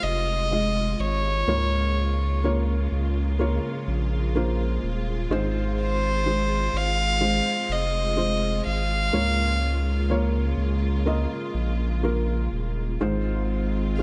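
A single bowed violin carries the melody up front, its rich, pure tone played sul tasto with a soft attack so the line seems to float between C5 and F5. This is an emotional, heartfelt pop passage at a slow 62 BPM in straight 4/4, cut from a longer piece and lasting 14.0 seconds. Beneath it, a felt-muted upright piano gives mellow, intimate accompaniment with a short sustain, while a studio string section holds lush, woody chords with vibrato. A saturated sub bass sits deep and thick, its sine tone up front with a fast attack and sustained notes. The harmony moves between Ab6 and Db6, and light studio reverb adds a sense of space while the top end stays rolled off above 10.8 kHz.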